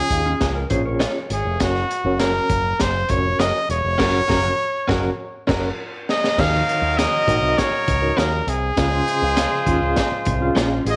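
Joyful and warm, this short uptempo cut from a 1960s-style soul piece moves in a straight four. A bright, close-miked trumpet carries the melody up front with light vibrato and a slapback echo, over a reedy, worn electric piano whose fast tremolo pulses through its built-in speakers and sounds slightly out of tune. The picked electric bass runs through an envelope filter, while the crunchy breakbeat kit sits up front with dark cymbals, a high-tuned snare, a tight kick and a saturated, gritty tone with a rolled-off top. A mellow, dark electric guitar plays a fingered riff in the background, and a direct-recorded clean guitar adds very quiet, compressed stabs. The band hits a run of accents that ends in a drum fill at 5.8 seconds, the mellow guitar drops out at 5.7 seconds, and a tight, vintage horn section enters at 6.4 seconds, adding a second line. Light studio reverb gives the whole band a sense of space.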